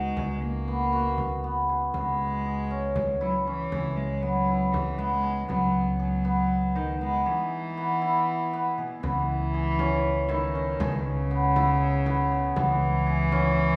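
A straight, restless pulse in 7/8 at 237 BPM counted in eighths drives this hypnotic contemporary chamber piece in C# dorian, cut from a longer work. A bright, shimmering cimbalom rings out hammered arpeggios up front, beside a close, reedy bowed cello playing a gut-string second line in period style, while a woody pizzicato upright bass holds a steady C#. A deep frame drum sits in the background from 0.2 s to 5.7 s and returns at 9.0 s, as the harmony shifts toward C#m7 inside a resonant recital-hall reverb.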